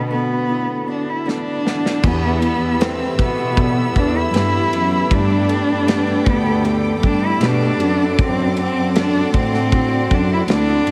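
A longing, emotional pop ballad in E minor at 78 BPM, cut from a longer piece, features an up-front single cello carrying the melody in a nasal, boxy voice with vibrato and a diffuse ambient delay. It is set over a mellow tine electric piano in the background, a picked ladder-braced acoustic guitar arpeggiating through lush chorus, and a bowed cello section playing sul tasto bass lines. The electric piano and drums play fills before the drum kit settles in with a punchy kick, and at 2.0 seconds a rich, smooth string section adds sustained chords over Em, Gadd9 and D7/F#, all in a dreamy mix soaked in a huge reverb.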